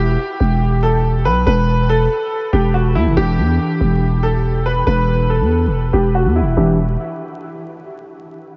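Drill hip hop at 141 BPM in a half-time feel and E minor, dark and menacing, where a clear concert grand piano carries the melody through lush chorus, a low-pass filter and tape echo above a growling, buzzy 808-style bass, while warbly, nostalgic lo-fi synth keys with a filter sweep join at 3.1 seconds over Em to Em7 harmony, all set in a dreamy mix soaked in huge ambient reverb with vinyl crackle and a dark, rolled-off top, cut from a longer piece.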